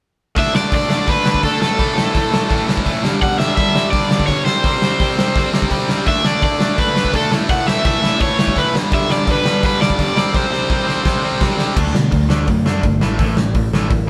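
Energetic and rowdy, this punk rock excerpt has an up-front cranked stack guitar playing a bright overdriven melody over two picked guitar riffs and a dark, punchy big rock drum kit with a fill from 10.3 seconds, before the melody and second guitar stop and a growly overdriven bass enters at 11.8 seconds, all captured as a band playing live in one room with light reverb.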